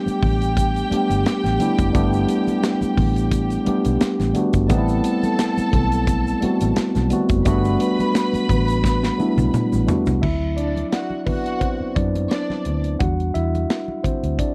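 Lush and romantic, this excerpt of 1970s-style soul at 87 BPM in G major swings gently over a punchy drum kit, a round foam-muted fingered bass, soft-handed congas and a grainy egg shaker, while dark, bowed sul tasto strings with light vibrato hover behind a mellow, up-front tine electric piano that moves into a solo at 10.2 seconds after a drum fill, all in a dry, close studio sound with light reverb.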